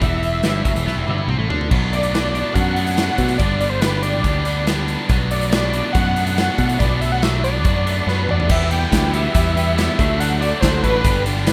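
This rough home demo sounds dry and close, with its big rock drum kit placed up front in a bright stone room. It's a moody, restless indie rock clip in E minor, cut from a longer piece and driving along at 142 BPM in a straight 4/4. A bold, detuned sawtooth unison lead carries the melody with a fast attack and vibrato. Beneath it, a cranked stack guitar grinds out an overdriven, picked riff while a clean, compressed twelve-string electric guitar adds a chorused shimmer in the background. A punchy, direct picked bass anchors the low end, and the drums bring bright cymbals, a medium-tuned snare and a punchy kick, with a fill arriving at 0.9 seconds. After another fill, a lush, slow-attack pad with chorus and phaser enters at 8.5 seconds as the chords return to Em and move to D.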